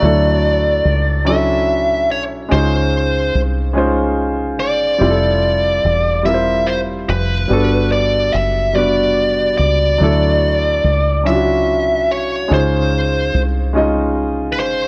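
A biting, overdriven lead guitar carries the melody up front in this slow six-eight R&B excerpt, its picked tone sitting over a polished grand piano with short sustain and a deep, round, foam-muted fingered electric bass, all three playing throughout. The mood is tender and sensual, with lush major-ninth chords moving from Dmaj9 to C#maj9, Fmaj9 and Gmaj9 before returning. A moderate echo chamber reverb and small room ambience frame the sound, and a worn cassette quality adds a warbling pitch drift.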